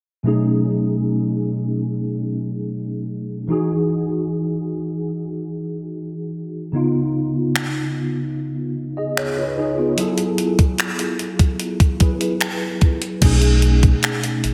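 A mellow tine electric piano opens the excerpt at 0.2 s, its clean, direct tone sitting up front with an ensemble chorus as it moves through lush chords: B13, Emaj9, C#9 and F#m9. This is late-night contemporary R&B at a slow 74 BPM in 4/4, with a straight feel and an air of longing. At 7.6 s a sampler-style 12-bit drum machine arrives with a thumpy kick, finger snaps, hi-hat and crash cymbal; it was re-recorded in a large room yet stays close and present. A round analog bass joins at 13.2 s as the harmony returns to B13 and a new section begins, its deep, dark tone blending sawtooth and sine with a fast attack and long sustain. A lush hall reverb soaks the whole mix, giving the track a dreamy atmosphere.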